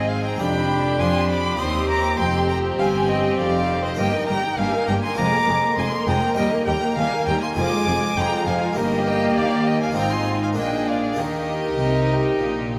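A distant solo violin with expressive portamento carries the melody of this stormy, dramatic baroque-style concerto movement at 100 BPM, joined by a clear, focused chamber violin section high above, a smooth, even violin section on the second line, a viola section with a smooth top, a lush cello section in the background, a soft-attack double bass section, and a dry, full, close-miked harpsichord, all set in a concert hall reverb as the music turns from C minor to Eb major at 4.0 seconds.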